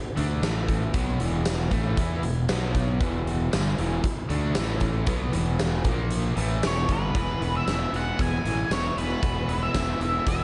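A straight, driving rock beat in common time comes from a big, pumping acoustic kit of hi-hat, fat snare, hard-hitting kick and tambourine, up front and joined from the start by a punchy fuzz-toned fingered bass with overdrive. A bright, picked semi-hollow guitar and a crunchy guitar set back in the mix with tremolo play the riff through A5, E5, B5 and A#5 power chords before settling on E at 7.1 seconds. At 6.7 seconds an octave-fuzz lead guitar enters with a distorted, slapback-echoed melody, giving this confident classic rock fragment a big arena sound in a moderate stage reverb.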